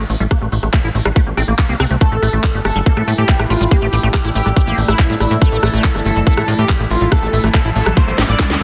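A dense, heavily limited modern mix with light digital ambience carries this driving, hypnotic psychedelic trance excerpt. A tight, up-front electronic kick and a garage kit with a cracking, softly clipped snare, crisp hats, handclaps and rim clicks sound tape-warm and layered, as if re-recorded in a large room. Beneath them a punchy, funky analog bass plucks low and close, while a squelchy, resonant acid riff with a filter sweep sits in the background, pumping against the kick through chorus and tape echo. A deep, moody pad hovers very quietly from the start. A thick, bold unison lead with vibrato enters at 2.0 seconds, bright and wave-folded, carrying phaser and tape echo. At 3.0 seconds a drone of moving overtones joins with slow-attack sustained chords, and a very quiet riser and a drum fill arrive near the end of the cut.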